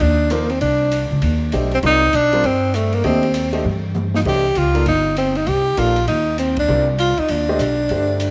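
A close, intimate sound with a moderate plate reverb in a small room frames this brief, spiritual and cool modal jazz fragment, swung on a Cm9 chord. A breathy, close-miked tenor saxophone carries the melody up front with vibrato and a touch of tape echo, over a growly, woody pizzicato upright bass and a dark, smooth open drum kit with a boomy kick and dark cymbals, while a clear upright piano joins at 0.3 seconds. The drums play a fill from 3.6 to 4.3 seconds, and the whole band hits an accent at 6.5 seconds.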